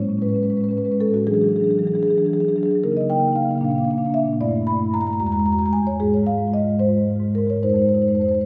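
Set in a lilting 6/8 that bends freely with rubato, this short passage from a longer contemporary classical piece unfolds at an unhurried, breathing pace. A solo marimba played with soft mallets carries everything, its padauk bars giving a woody, rounded tone that sits up front and spans from the low E2 up to Cb6. The mood is reflective and hypnotic, with the harmony drifting through colorful, unexpected shifts from Amaj7 to E9, Dbsus2, Bb, Gsus2, Eadd9 and Ab6 before settling on Fm7 at 7.6 seconds. A wet concert hall reverb with a 2.0-second decay surrounds the instrument, lending an airy glow to each struck note. The tuning sits slightly below standard pitch at A4 = 439 Hz, and the marimba's tone stays mellow and warm.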